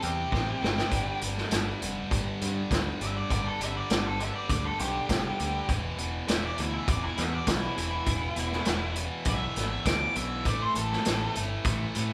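Gritty and swaggering, this short cut from a longer classic rock piece moves at 101 BPM in a straight 4/4, with a dark, fuzzy octave-fuzz lead guitar taking a solo over a bright, double-tracked overdriven rhythm guitar riff and a growling, punchy picked bass. An up-front vintage drum kit with a tight kick, medium-tuned snare and rolled-off top plays an early fill from 0.3 to 0.9 seconds. The lead guitar drops out at 11.3 seconds, and the band sounds as if it is playing live together in one large studio room with a moderate reverb, moving through C, G5, E5 and A5.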